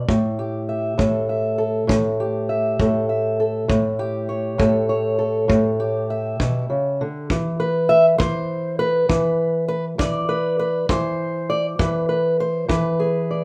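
A dark, boxy parlour steel-string acoustic guitar opens this soulful, laid-back acoustic country blues excerpt with an up-front fingerpicked melody in A mixolydian at 67 BPM in a straight 12/8, moving from A7 to E5 at 7.3 seconds, while a punchy, small-room kick drum with a rolled-off top sits up front alongside it under moderate studio reverb.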